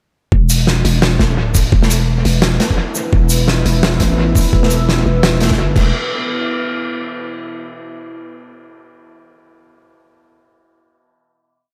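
Half-time drum and bass at 171 BPM with a swung sixteenth feel, this short, cinematic and heavy piece opens at 0.3 seconds on a drop where a growling, buzzy 808-style bass with long dark notes sits under a knocking, tape-warm electronic kick and an oversized, low-tuned acoustic kit that brings a fat snare, shaker, closed hi-hat, dark crash cymbals and analog delay in a gritty, up-front, sparse half-time beat. A deep, moody sawtooth pad with chorus, built-in reverb and sidechain pumping enters at 2.1 seconds with slowly shifting sustained chords, then holds a final chord alone from 5.9 to 7.3 seconds. The mix is echo-heavy, with a big, pumping room sound on the drum kit.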